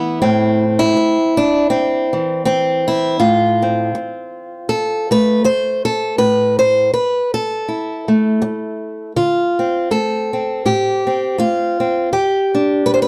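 A fingerpicked steel-string acoustic guitar opens alone, carrying this reflective, intimate folk piece in A minor at 81 BPM with a gentle swing on the eighth notes. Its tone is bright and up front, ringing across a range from E2 to C5, while the overall production sits dark and warm under a light reverb. The harmony moves from Am through F/A and A5 before shifting at 9.2 seconds into a new passage built on Dm7 and then Em7. The guitar is tuned slightly below standard pitch, at A4 = 436 Hz. This short passage is cut from a longer piece, ending at 13.1 seconds.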